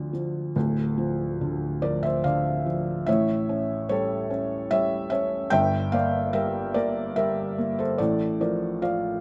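A felt-muted upright piano sits up front, soft and intimate, its mellow tone carrying audible action noise as it plays alone through this brief classical excerpt, reaching from D1 up to G5. The lyrical solo moves in a rubato 3/4 at around 73 BPM in D minor, wistful and dark, passing from Dm through A7 and Edim/G before settling on Dm/A near 8.0 seconds. Close, detailed microphones and light reverb keep the sound near and private.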